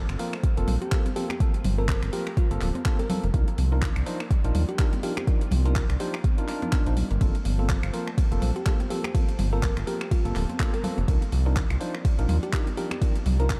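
Hypnotic deep house at 124 BPM in G minor, swung on the 16ths, cut from a longer piece: a round analog bass and an overdriven electronic kick sit up front with sidechain pumping on the bass, while an overdriven kit of finger snaps, handclaps, hi-hat and ride, bright background congas, clean tine electric piano stabs with vintage 12-bit grit, woody mallet-like pluck arpeggios, a sparkling bell-like FM electric piano melody entering at 0.8 seconds, and a hollow, flute-like pad drift over Gm11 and Cm11 chords in light reverb.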